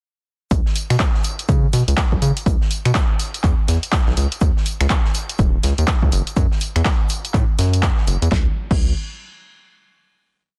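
A dense, heavily limited and nearly dry mix carries this smooth deep house piece in C# minor at 123 BPM with a swung 4/4 feel: a punchy electronic kick thumps four-on-the-floor up front alongside a fat-snared deep house kit of programmed hats, claps, snaps, tambourine and crash, both overdriven and roughened by vintage 12-bit sampler grit; a rubbery, hollow square bass pumps under sidechain with a funky syncopated line; and a big-room acoustic rock kit plays an edited breakbeat loop in the background through high-pass filtering, powering the drop from 0.5 seconds until a final chord closes the piece from 8.3 to 10.3 seconds.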